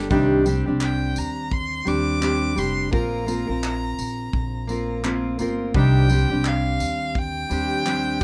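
A gently swung 16th-note groove at 85 BPM in 4/4 carries this tender, wistful acoustic pop excerpt, tuned slightly low to A4 = 438 Hz. An up-front fingerpicked dreadnought acoustic guitar lays down the accompaniment alongside a dark, woody pizzicato upright bass, with a modern studio drum kit whose punchy kick, handclaps and tambourine sit mid-forward in a studio room. At 0.8 seconds a single bowed violin enters with the melody high in its register, its tone rich, smooth and even, shaded with vibrato. The harmony moves from Cmadd9 to Bbsus2 at 2.9 seconds and back to Cmadd9, giving the short passage a soft, unresolved ache. The sound is dry and intimate, keeping each instrument close and clear.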